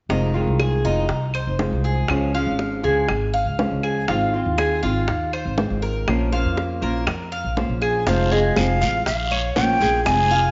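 A straight 4/4 pulse at 120 BPM drives this nostalgic, sultry Cuban son and guajira in F minor, as tight, high-tuned bongos and woody claves in the background sit beneath a dark, thumpy gut-string upright bass up front, metallic double-string Cuban tres arpeggios and fingerpicked flamenco guitar with audible finger squeak, set in a small, wet echo-chamber room with a dulled top end, until at 8.1 seconds a breathy metal jazz flute takes the melody over a move from Fm to Bbm, joined by very quiet soft-handed congas, a raspy guiro and distant, grainy maracas.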